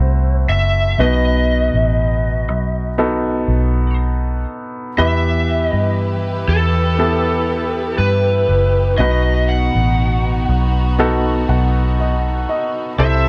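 A dark, warm production with light small-room reverb frames this melancholic, longing pop fragment at a slow 60 BPM in 4/4, where an overdriven, lo-fi lead guitar carries the melody over clear, polished grand piano and a round, foam-muted vintage electric bass moving through Am, B and Em, a soft-attack sul tasto string section enters with sustained chords at 5.0 seconds, and the piano adds a fill from 11.0 to 13.0 seconds.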